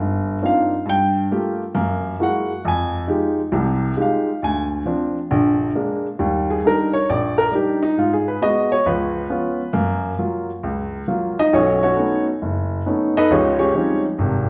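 Solo jazz with a swinging, relaxed feel, cut from a longer piece: a baby grand piano plays alone for the full 14.5 seconds, its tone warm, open and up front, with a long sustain across a range reaching from the low bass to the upper treble. The harmony moves through rich extended chords such as minor elevenths, ninths and a closing major ninth with a raised eleventh, over two matching passages that turn at 6.2 seconds. A wet large-studio reverb gives the sound a roomy, live-in-one-space character.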